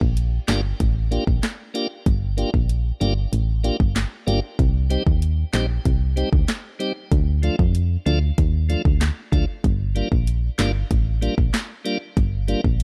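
A straight 4/4 dancehall groove at 95 BPM in G minor sets a sultry, hypnotic mood, with an up-front electronic afro-pop drum kit of deep kick, sharp snare, handclaps and hi-hat driving alongside a punchy, round FM bass with a fast attack and decaying tail, while a piping, scooped tonewheel organ, lightly overdriven through a slow rotary speaker and pumped by sidechain, enters at 0.5 seconds over Gm7, Cm, Dm and back to Gm7 in a dry, dark production cut from a longer piece.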